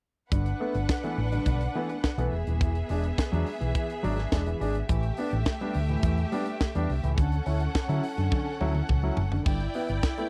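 Disco at 105 BPM with a glamorous, danceable mood, built on a tight funk drum kit with a high-tuned snare and a tight kick up front, alongside a dark, round, fingered hollow-body bass. A concert grand piano with audible action noise and long sustain supplies the accompaniment, while a lush bowed string section with vibrato carries the second line over chords moving from G69 through E7, A7sus4 and Dmaj9. A drum fill runs from 8.3 to 9.5 seconds in this dry, close 1970s-style studio sound, cut from a longer piece.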